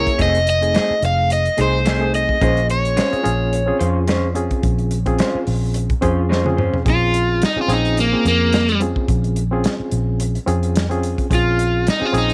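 Opening on a hollow-bodied, overdriven semi-hollow guitar melody with phaser, a barky, reedy electric piano with overdrive and tremolo, dark, lo-fi stabs from an electric guitar through a small old amp, and a round, foam-muted fingered electric bass up front, this brooding, soulful straight-eighth soul blues in Bb minor at 108 BPM rides a dry soul drum kit with a tight kick and medium-tuned snare over F7#9 and Bbm9 chords; the stabs stop at 6.8 s during a drum fill, and an overdriven guitar takes a solo from 6.9 s, all in a small-room ambience.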